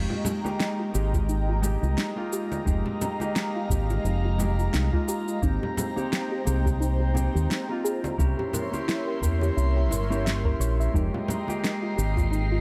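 Wistful and warm, this short sunset chillout excerpt drifts along in a swung 4/4 groove, cut from a longer piece. A round, punchy fingered electric bass sits up front, anchored by a deep analog-style electronic kick that enters at 1.1 seconds, while a tape-toned electronic shaker and fat snare join with ringing, hard-hand congas in a small room. A dark, clean, compressed electric guitar plays accompaniment through a digital delay, and an airy, breathy pad holds sustained chords with chorus and phaser. In the background, a soft, round synth pluck traces arpeggios with chorus and delay, a filter sweep running across it for the whole excerpt. The harmony moves from Fm11 to Abmaj9, C7b9 and back to Fm11, and near the close, at 11.3 seconds, a faint wind-like tuned noise texture with its own reverb drifts in over light digital ambience.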